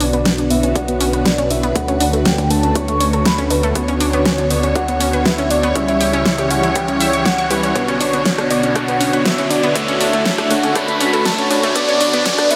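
Progressive house build-up, expansive and emotional, where a velvety, dark synth lead with chorus, tremolo and delay sings the melody over lush bowed strings holding sustained chords in the background, while a bright, warbling analog pluck runs arpeggios and a soft, evolving supersaw with tape colour hits stabs, both moving through filter sweeps. Underneath, a round, deep analog bass pumps with the sidechain, an up-front pop kit sets a fat snare beside hi-hat and rim click, and a punchy electronic kick sits further back from 0.3 s. A riser enters at 4.1 s to lift the build, and the whole dreamy mix is soaked in a wet, lush hall reverb.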